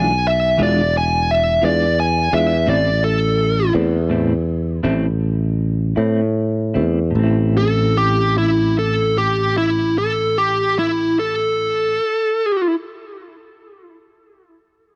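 Mournful and soulful, this slow blues in A minor moves in a straight 12/8 at roughly 50-58 BPM in dotted quarters, and the pulse slows down through its opening stretch before a new passage begins at 7.1 s. Up front, a dark, smooth lead guitar carries the melody with a picked, overdriven tone and a cassette-tape grain, ranging from E4 to G#5 and ringing on until 12.7 s. Beneath it, a clean electric guitar plays picked, twangy accompaniment from A2 to F4, with a tremolo that lends a shimmering pulse to its warm tone. A sustaining fretless electric bass sits close and growly in the low register, bright and direct with tube saturation. The harmony moves from a tense E7b9 to A minor at 2.7 s. With little reverb and the intimacy of a home cassette recording, this short cut from a longer piece feels dry and personal.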